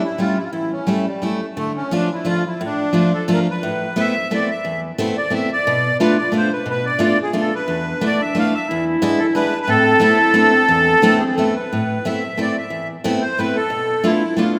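A bittersweet, nostalgic musette waltz in three, where a sweet, reedy accordion with light tremolo tuning carries the melody up front over a bright, full-bodied picked steel-string acoustic guitar, while a clear clarinet in jazz style adds a second line with vibrato and scooped notes from 7.7 to 11.5 seconds, all set in a lush concert-hall reverb in this brief excerpt from a longer piece.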